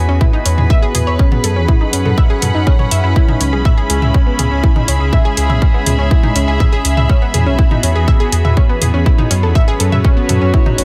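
Dark and dramatic, this short cut from a longer melodic techno piece in C# minor moves at 122 BPM, its harmony shifting from E through F#sus4 to a long stretch of C#m7. A deep, rumbling detuned saw bass and a punchy, up-front electronic kick anchor the groove, joined by a tape-softened house kit of hi-hat and toms, while a round analog pluck spins arpeggios through chorus and tape echo. Behind them a morphing, warbling wavetable pad with 12-bit sampler grit sustains the chords as a reedy, gut-toned studio string section adds bowed texture, every melodic part breathing with sidechain pumping in a dry, close mix.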